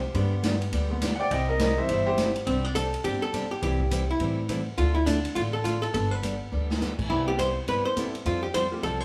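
Recorded live in one room under a wet studio reverb, this swinging, playful western swing country cut opens on a brilliant, up-front upright piano over woody pizzicato upright bass, a full-bodied picked jumbo acoustic guitar with finger squeak, and a distant, roomy big-band drum kit with a boomy kick, before a dark, clean hollow-body archtop guitar takes the melody at 2.5 seconds, a drum fill lands at 6.5 seconds, and the piano returns at 7.3 seconds.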